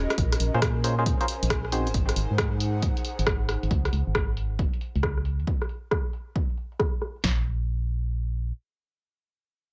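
UK garage two-step at 136 BPM in Bb minor, late-night and moody, built on a hollow, dark organ-like FM bass up front and a swung, punchy analog drum machine playing kick, snare, low-pass-filtered hi-hats and rim clicks in a small, dry room, with a brief mellow organ stab carrying chorus, phaser and tape echo that ends by 1.9 seconds, an airy, breathy pad with chorus and sidechain pumping that ends at 3.7 seconds, and filter sweeps moving through the drums, bass and stab over Bbm9 and Ab7 chords.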